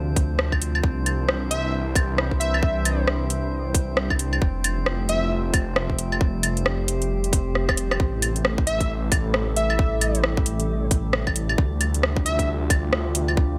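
A swung 4/4 garage groove from an overdriven, tight electronic kick and a tape-toned kit of claves, metallic hi-hats and rim clicks drives this nocturnal, wistful future garage excerpt, where a warbling lo-fi pad and a menacing detuned saw bass both pump under sidechain, a glassy texture drifts calmly in the background, a punchy, catchy unison lead with vibrato and analog delay enters at 1.5 s, and a short drum fill at 7.6 s leads into a repeat of the passage.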